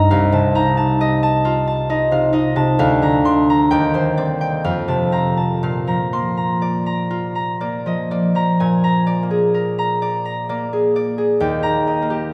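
The concert harp carries this short classical solo piece alone, sounding acoustic, ringing and up front as it spans the range from C2 to C6. The mood is graceful and dreamy, set in Bb major in 3/4 at a rubato pace of roughly 59 to 69 BPM, with the harp tuned to A4 = 442 Hz. Its fingerpicked phrases open on an F7/C chord and move through Bb/D, Cm/Eb and F before settling on Bb. At 8.6 seconds a new section begins on Bb7 and reaches Eb near the close at 12.3 seconds. The harp is heard in a church or concert hall, surrounded by a generous, lingering reverb, and this brief passage is cut from a longer work.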